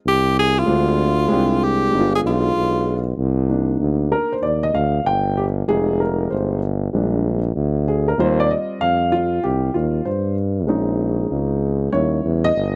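Swung sixteenths at 96 BPM in 4/4 carry this mellow, smoky hip hop excerpt in C minor, where a subtoned tenor saxophone with light vibrato and scooped notes solos until 3.2 seconds over a distant, roomy tuba bass, while an intimate, vintage baby grand piano with audible action noise accompanies from 0.7 seconds and then takes a smooth solo over chords such as Cm9, Fm9 and Bb13, all set in a dark, warm production with light reverb.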